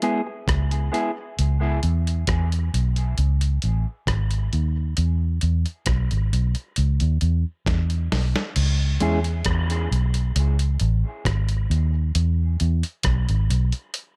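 A round, foam-muted vintage electric bass sits up front in this spacious, heavy dub reggae excerpt in C# minor at 67 BPM, riding over a gritty, compressed sampler-style soul drum kit with a thumpy kick and a drum fill at 7.7 seconds, while a dark, clean electric guitar appears only in brief dub-echoed, high-passed touches at 0.0 and 9.0 seconds in a dry room, moving through E and C#m.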